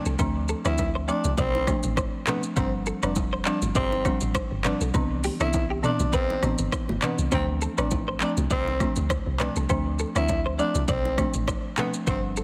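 A growling, breathy tenor saxophone and a woody, rustic marimba open this sunny, breezy afrobeats excerpt together, the sax carrying a raspy, jazz-style melody with vibrato and scooped notes over the marimba's dry accompaniment. A twangy, clean electric guitar riff with ensemble chorus, a round, dark log drum bass and an up-front electronic drum kit with deep kick, metallic hi-hats, handclaps, rim clicks, shaker and toms join almost at once, with congas and bongos sitting in the background. The chords move from Dm7 through G7sus4 and Cmaj9 and back to Dm7, all under light reverb and a heavily compressed, radio-like sound.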